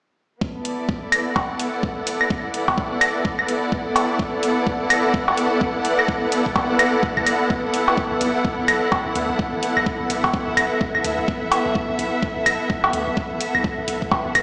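A knocking electronic kick and metallic electronic hi-hat set a 16th-note swing at 127 BPM in 4/4, grounding a quirky, sparse minimal techno piece in B minor that rests on a Bm7 chord. Tape-warm claves and cowbell carry a dub echo, while a rich, bowed string section with vibrato sits up front and pumps under sidechain, and the whole mix sits in a lush hall reverb with a stone-room, small-speaker character. At 8.1 seconds a deep, punchy sine sub bass enters, with a pitch-drop attack, tube saturation and its own sidechain pumping.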